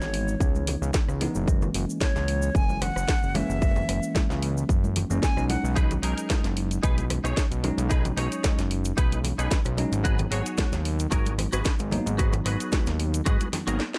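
A lightly swung 112 BPM nu-disco groove in 4/4 drives this sleek, sensual excerpt, with a punchy, up-front electronic kick under a house kit of hi-hat, rim click and cracking snare, close, ringing cabasa and congas set in the background, and a fat, detuned sawtooth bass with a filter sweep, while a bell-like tine electric piano with chorus, sidechain pumping and slapback echo carries C#m7, F#7, B6 and G#m7 chords, a breathy concert flute with vibrato and analog delay sings the melody until 5.7 s, a twangy, compressed clean guitar riff with 12-bit sampler grit enters at 5.8 s, and a drum fill arrives at 13.8 s, all in a mix with little reverb.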